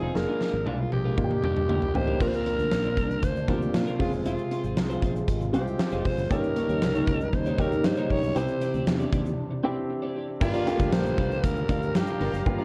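Heard through a cassette-tape haze with moderate studio reverb, this moody, dramatic 1980s-style pop fragment, cut from a longer piece, moves at 117 BPM in a straight 4/4. A raspy, gritty alto saxophone with vibrato and scooped notes leads over an intimate grand piano with audible action noise, a twangy, chorused twelve-string electric guitar riff in the background, and a round, dark fingered bass with tube saturation, while a huge arena drum kit with a fat snare and bright cymbals opens with a fill at 0.2 seconds. At 2.2 seconds a detuned sawtooth pad with a slow attack and filter swell joins alongside a grainy, barely audible tube shaker; after a brief break, a crunchy overdriven guitar slips in very quietly at 10.4 seconds.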